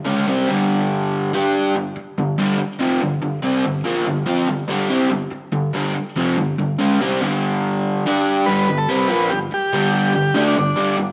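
Swaggering and raw, this short rock excerpt drives along at 143 BPM in a straight 4/4. A crunchy, overdriven electric guitar, picked and double-tracked, sits up front from the start, playing a riff built on a G5 chord. At 8.5 seconds the harmony moves to a full G chord as a vintage combo organ enters up front with a buzzy, overdriven melody colored by light vibrato. The organ carries its line until 11.0 seconds, just before the cut at 11.1 seconds. A moderate echo chamber reverb gives the sound a roomy sense of depth.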